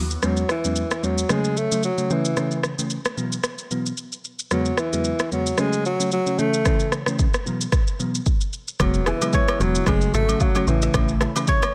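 A light reverb gives this sunny, breezy afrobeats excerpt an open, airy glow, with a lilting swing in its sixteenth-note feel. An electronic afro-pop drum kit sits up front with a deep kick, rim click and shaker, while a bell-like FM electric piano sparkles through the accompaniment, mellow and treated with chorus and phaser. A breathy alto saxophone carries the solo melody from 0.2 seconds, its pop-style vibrato sitting prominently in the mix over a cycle of E6, F#m, A and Bsus4 chords. At 8.8 seconds the arrangement thickens: a round, dark log drum bass with a percussive FM attack returns, a very quiet lush unison pad spreads thick, detuned sawtooth chords, and close, dry agogo bells and woodblock chatter in the background. A crisp, fingerpicked acoustic kora joins at 9.1 seconds with a ringing high riff that brightens the closing bars.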